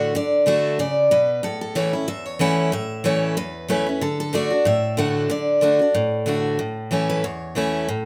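A picked steel-string acoustic guitar with a bright, full-bodied dreadnought tone and audible finger squeak carries the plate-reverbed melody up front in this virtuosic, rustic bluegrass excerpt in D major at 186 BPM with a swung feel, while a second picked dreadnought with fresh strings plays the accompaniment beneath it through D and A chords, the lead stopping at 7.5 seconds as the backing guitar continues to 8.1 seconds in a close, detailed studio sound.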